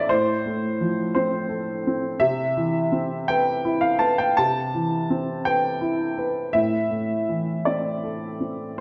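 Bathed in a recital hall's reverb with a 1.4-second tail, a woody, up-front upright piano plays alone through this peaceful, hopeful fragment of neoclassical minimalist music in C major, drifting at about 56 BPM in a rubato 6/8 with uneven beats as it moves from F/A to Cmaj7 at 2.2 seconds and settles on A minor at 6.5 seconds, spanning A2 to A5 across its 8.8 seconds.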